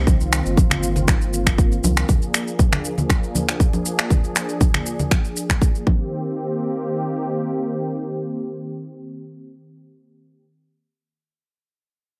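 The sound is dry and close, with the punchy kick sitting up front and a tape-warm, small-room character on the electronic drums. This hypnotic, driving afro house fragment, cut from a longer piece, opens on a mellow sawtooth pad of detuned, soft-attack chords treated with chorus and sidechain pumping, moving from Cm7 to Bb7 and back to Cm7. A deep, round sine sub bass with a fast attack pumps beneath it only until 2.0 seconds. The layered kick and the produced electronic shaker and finger snaps drive the groove alongside bright, hard-handed acoustic congas, all dropping away by about 6.0 seconds. From there the smooth pad sustains by itself through the second section, carrying the piece to 10.4 seconds.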